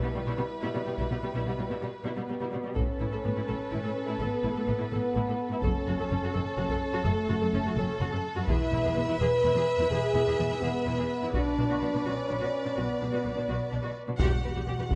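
Cinematic, epic orchestral film score in a heroic yet dark 6/8, cut from a longer piece, where a lush bowed violin section carries the melody over a second violin line in the background and focused violas, while a prominent French horn section holds sustained chords, distant rich cellos and woody double basses anchor the bass, heavy-stick taiko drums join at 1.0 s, and the band strikes an accent at 14.2 s, all set in a moderate scoring-stage reverb with lossy compression artefacts.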